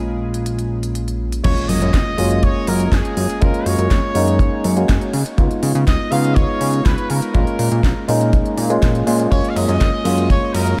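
A straight 4/4 groove at 122 BPM drives this feel-good, groovy nu-disco clip in F# major, where a clean, up-front tine electric piano with tape echo and a fat, detuned analog bass with tube saturation open over A#m7 before a crisp-hatted house kit with a cracking snare comes in at 0.3 seconds, and at the drop at 1.4 seconds a tight, polished kick, a background electronic impact and a bright, smooth-topped trumpet section carrying the tape-echoed melody arrive over F#maj7, C#7 and A#m7 in a light studio ambience.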